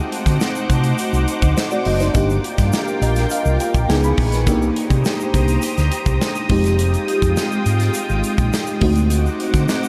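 A dreamy mix soaked in a huge ambient reverb opens this short excerpt of polished 1980s jazz-funk pop in C minor, moving at 104 BPM in a straight 4/4 with a bittersweet, slick mood. An FM electric piano layered with a soft pad carries the accompaniment through a lush chorus, its mellow, full-bodied tone striking quickly and then decaying, and it steps forward with a fill between 2.7 and 4.5 seconds. Beneath it, a silky vintage string machine holds sustained chords with a slow attack, a long release and a warbling ensemble chorus. A fingered electric bass sits up front with a dark, round, punchy amped sound alongside a modern studio drum kit with a tight kick, medium-tuned snare and hi-hat in a small room, while a grainy egg shaker stays close and dry in the background. The harmony drifts through D7b9, Gm7, Dbm7, Cm7 and Fm9 before returning to D7b9.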